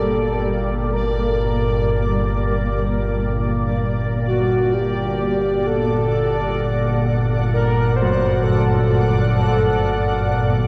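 A mellow, warbling horn-like synth lead carries the melody over an up-front organ-like drone, a blurred granular cloud pad and a faint bubbling stepped-filter texture in this dark, cavernous ambient drone piece in free time, moving from Gm to D/G at 3.8 seconds, while clangorous bronze church bells ring at the start and return from 8.0 seconds, all wrapped in a huge ambient reverb.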